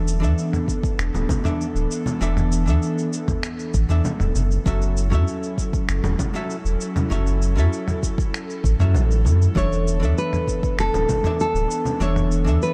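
Wistful and warm, this short sunset chillout excerpt drifts along in a straight 4/4 under light digital ambience and a dark, warm production. A clean, hollow-body archtop guitar with delay picks out the accompaniment, while an airy, breathy pad with a warbling vintage chorus holds soft sustained chords moving from E7sus4 to F#m7 and back. A deep, round sine sub bass sits up front with tube saturation. A gritty, tape-warm sampler-style kit of cabasa, finger snaps and toms is joined at 0.7 seconds by a layered, overdriven electronic kick, and distant, ringing congas played with hard hands sound from a large room. At 9.6 seconds a full-bodied, fingerpicked nylon-string guitar steps forward with the melody, its fresh strings touched by digital delay.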